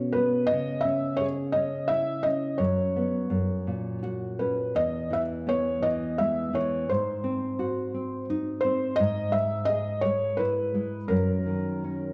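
Innocent and gentle, this brief cut from a longer children's lullaby sways at 85 BPM in 3/4, with a soft, felt-muted upright piano carrying a mellow, intimate melody, its action noise audible, over a woody, thumb-plucked nylon-string guitar whose old strings give it a dark, deep classical tone, both set up front in a moderate recital-hall reverb, as the chords drift from C#m through F# and E to G#7 and G#m before the guitar slips in a short fill at 11.8 seconds.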